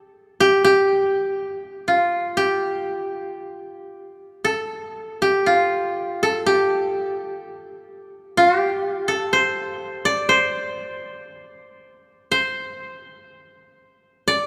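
Japanese traditional music, calm and austere, carried by a solo koto that plays alone through all 14.5 seconds of this fragment from a longer piece, moving in an unhurried rubato. Plucked with fingerpicks, the koto sounds bright and woody, dry and up front, its notes sitting in a modest middle register. A church-like reverb with a long decay surrounds it, and a short opening phrase gives way at 4.4 seconds to a longer second passage.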